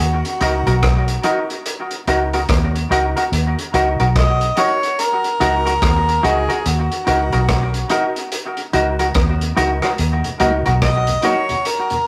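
A mellow, distant harmonica melody opens this meditative, laid-back roots reggae excerpt over a round, foam-muted vintage electric bass, soon joined by a gritty breakbeat kit of tight kick, hi-hat and rim click, a clean semi-hollow electric guitar treated with spring reverb and analog delay, and brilliant, woody upright piano stabs, all sitting on a single minor chord in a rough rehearsal-room sound until a soft, flute-like tonewheel organ with slow rotary speaker slips in at 10.2 seconds.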